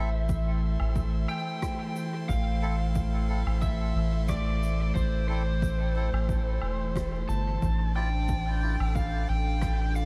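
A straight 4/4 pulse anchors this meditative, deep ambient dub fragment, cut from a longer piece: a punchy, layered electronic kick and a natural-sounding shaker, woodblock and rim click sit in the background from 0.3 s, the hand percussion trailing dub echo. Up front, a round, soft sub bass holds the low end with sustained notes. An airy, breathy pad of detuned sawtooth and triangle tones with a noise layer spreads sustained chords with a slow attack and long release, its chorus lending a bright sheen. Over this, a dark, overdriven electric slide guitar played with fingerpicks carries the melody through dub echo, while a reedy, nasal melodica adds echoing stabs in the background until 8.8 s. The harmony rests on Am before shifting to Dm/A at 7.6 s, all framed by studio reverb and a layer of vinyl crackle.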